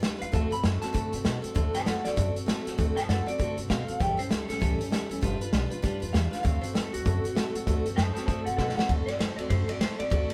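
A live one-room recording with light reverb carries this upbeat, retro rockabilly excerpt in D mixolydian at 196 BPM with a swung feel, where a punchy, up-front vintage drum kit in a pumping small room, a woody, thumpy pizzicato upright bass and a full-bodied picked dreadnought acoustic guitar with finger squeak drive D7, A7 and G7 changes beneath a twangy, slightly broken-up electric guitar melody that enters at 0.2 seconds, before a drum fill at 8.6 seconds leads into a clean electric guitar solo from 8.9 seconds.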